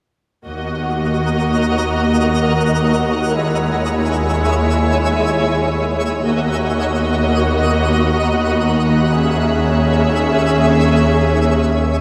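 A rich violin section with vibrato carries the melody in this ominous, uneasy cinematic fragment in Eb phrygian at 83 BPM, over clear violas, a smooth cello section and a biting double bass section holding Eb2, while a twinkling granular texture with octave-up shimmer enters at 0.9 s, a metallic vibraphone rings in the background until 6.3 s, and a dark, distant high violin section then appears in the background, the whole ensemble set in a moderate scoring-stage reverb as the chords move between Ebm and Dbm/Eb.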